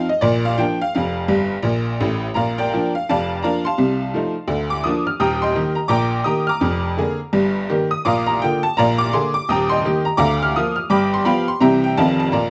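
A jangly, metallic tack piano carries this short stride jazz excerpt on its own, sitting up front with a bright, vintage bite. The mood is playful and swinging, with a light swing on the eighth notes, and the piano ranges from deep bass notes up into its sparkling top register. A honky-tonk piano fill arrives between 1.3 and 2.4 seconds, closing the opening section before the longer second passage takes over. From there the harmony moves through a busy run of major and seventh chords before settling on a dominant turnaround near 12.0 seconds. The sound is dry and close, set in a small room with the intimate, percussive character of a 1970s-style studio recording.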